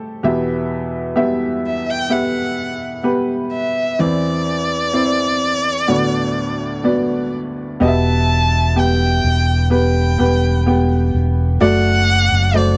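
Heartfelt and hopeful, this slow pop ballad at 63 BPM in 4/4 opens with a clear, woody upright piano that sounds smooth and vintage, and a warm, nasal solo violin enters at 1.7 seconds to carry an expressive, bowed melody with vibrato and portamento. At 7.8 seconds a round, dark, amped fingered electric bass joins beneath the chords, which move from Em through Cadd9/E and D6 and back to Em before settling on D/F#. The sound is a dry, close 1970s-style studio recording with light reverb and all three parts up front, tuned to A4 = 439 Hz, in an excerpt cut from a longer piece.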